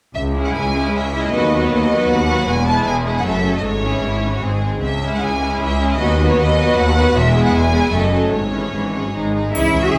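A clear, intense violin section opens this stormy, restless fragment of a fast romantic orchestral movement at 0.1 seconds, carrying a vibrato-rich melody in C# minor at 154 BPM in 3/4 with a rubato feel. The double basses and a smooth, even cello section arrive almost at once as the bass, the basses bright and focused, the cellos rich and set in the background. A second violin section follows with its own line, joined by a viola section supplying background accompaniment, and the bowed strings together form a symphonic ensemble. The harmony cycles through C# minor, B over D#, E, F# minor and G# chords before settling on a bare G# fifth. At 9.6 seconds a tight, mellow French horn section adds sustained chords in the background, alongside a faint, close and dry triangle. A wet scoring-stage reverb lends the strings a spacious, dramatic sheen.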